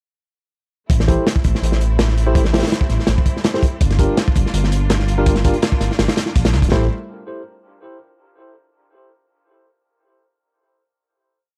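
A heavily chopped breakbeat drives this frenetic, raw drum and bass and jungle piece over a lightly swung sixteenth-note feel, its crunchy kit sitting up front with a tight kick, a medium-tuned snare and a rolled-off top. Beneath it a dark detuned saw bass rumbles through a deep, beating dub-style line, while a tine electric piano adds sparse echoing chord stabs, one shape moved in parallel, coloured by vintage 12-bit sampler grit and dub echo. A bright, distant studio string section holds lush bowed chords with vibrato, moving from Am7 to Gm7. At 3.8 seconds a dusty soul sampler-style kit slips into the background with an overdriven, compressed looped breakbeat of hi-hat, snare and tambourine. The drop gives way at 6.7 seconds to a final Am7 chord, and the piece carries the dry character of a small room and a hardware recording with transformer saturation.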